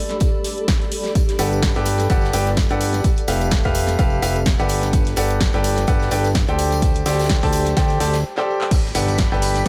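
A bright upright piano sits up front from 1.4 seconds, its woody, brilliant tone carrying audible action noise as it plays a riff with tape echo and sidechain pumping, in this uplifting, joyful piano house cut from a longer piece at 127 BPM in G major, swung on the sixteenths. Beneath it, a fat, saturated analog bass built from detuned sawtooth, square and sine waves pumps in step, while a punchy electronic kick drives the groove. A punchy analog drum machine adds crash, handclaps, hi-hat, ride, snare and tambourine through tape echo, backed by a very quiet big rock drum kit in a bright stone room and a close, dry tambourine in the background. From the start, a very quiet granular cloud pad drifts with a blurred, evolving haze until the break at 8.2 seconds, when a drum fill leads into a faint electronic impact. The chords move from Gadd9 through Gmaj9, Fmaj9#11, Gmaj9 and D7sus4 back to Gmaj9, and at the close a silky analog string pad arrives in the background with ensemble chorus and phaser, all within an echo-heavy small room ambience.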